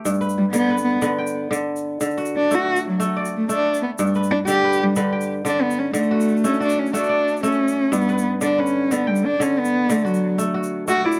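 Set in a small, moderately reverberant room, this hypnotic West African string and xylophone music in a straight 12/8 puts a crisp, ringing fingerpicked kora up front, its arpeggios spanning G2 to G5 over a steady sway between G and D chords. From 0.4 seconds a single close, dark bowed cello carries the solo melody with vibrato and expressive portamento, bathed in plate reverb, while a grainy, bright tube shaker sits quietly behind. The passage is cut from a longer piece and runs 11.2 seconds.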